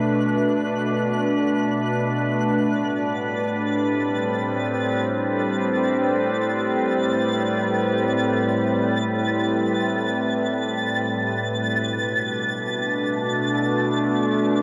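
A serene, spacious ambient passage opens on an evolving wavetable pad and a twinkling granular texture together, cut from a longer piece, with the texture gradually fading in. The pad sits up front, holding sustained chords with a slow attack and long release; its sine-like, vintage tone morphs and warbles through chorus, built-in reverb and shimmer reverb. High above, the granular texture is softer and bright, an FM sound sparkling with an octave-up shimmer, and it is also bathed in built-in and shimmer reverb. The harmony drifts from Bm7 to Am9 at 2.5 seconds, lingers there, and returns to Bm7 at 11.5 seconds. The whole recording sits in a huge, wet reverberant space and carries the worn, wavering pitch drift of old cassette tape.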